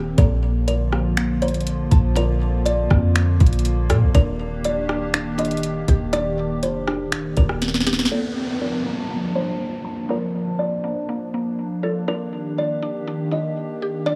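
Dreamy and floating, this atmospheric cloud-rap excerpt sets a hollow, airy pad with chorus and sidechain pumping under a woody kalimba melody and a background mallet-like synth pluck arpeggiating through delay, while a boomy 808-style bass and a soft-kicked, sharp-snared R&B kit of snaps, hats and rim clicks ride a half-time feel until a drum fill at 7.6 seconds, after which both drop away as a downlifter enters at 8.1 seconds and a filter sweep carries the remaining parts over Bbmaj7 and Ebmaj7 in a small, lightly reverberant room.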